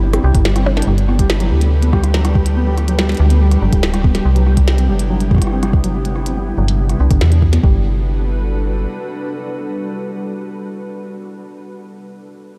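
A glitchy drum kit of clicky hats, a tiny snare, rim clicks and percussion blips sets a straight 4/4 pulse at 142 BPM, bolstered by a soft electronic kick that drops out from 0.5 to 0.9 seconds before returning, both parts re-recorded in a large room and the kit trailed by diffuse ambient delay. This intricate, glitchy IDM excerpt in G major sits on a metallic FM bass with a fast, decaying attack and tube saturation, placed up front and loud in the mix. A glassy, ethereal FM pad holds sustained chords from Cmaj9 to Gadd9 and on to Gmaj9, its ensemble chorus, built-in reverb and sidechain pumping carrying it to 11.8 seconds, after the other parts have stopped. A felt-muted upright piano plays mellow, intimate arpeggios with 12-bit sampler grit, a low-pass filter and diffuse ambient delay, and a filter sweep runs across it through the first section. A very quiet, detuned and nostalgic lead with vibrato sounds only briefly at the opening, while a grainy, flickering granular texture enters at 2.1 seconds in the background under reverb and analog chorus, all set in a light digital ambience.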